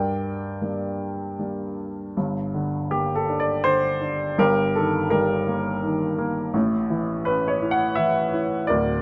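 Dark and melancholic, this short cut from a longer classical piece features a worn, up-front baby grand piano playing lyrically in 3/4 at 83 BPM with rubato, its long sustain ringing from deep bass up to the upper middle register through light reverb, captured by close, detailed microphones as the harmony moves from G minor at 0.0 s to E-flat over G at 4.4 s and A at 6.6 s.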